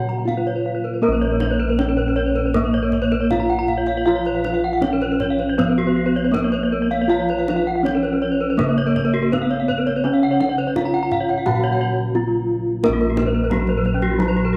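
Bronze metallophones ring out from the start in this brilliant, shimmering excerpt of Balinese gamelan at 79-88 BPM in Bb pelog, their paired tuning producing shimmering beats: one carries the melody with a slapback echo, a softer one plays the accompaniment, and two more weave arpeggios, one of them echoed, above round, up-front bossed gongs in the bass and a tight, distant kendang struck with hard hands, all set in a moderate plate reverb, with a break at 11.8 seconds before a new section begins at 12.8 seconds.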